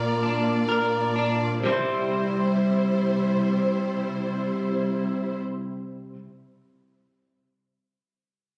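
Melancholic and aching, this short fragment of a six-eight pop ballad slows in its opening moments as a clean, double-tracked electric guitar, recorded direct and picked with a compressed, up-front sound, carries the accompaniment until 6.2 s. A lush symphonic string section sustains bowed chords with vibrato and a soft attack, close and expressive, before falling away at 5.4 s, as the harmony moves from Bb to C at 1.6 s. A moderate plate reverb and the roomy, club-like ambience of a phone recording wrap the pair in a compressed haze.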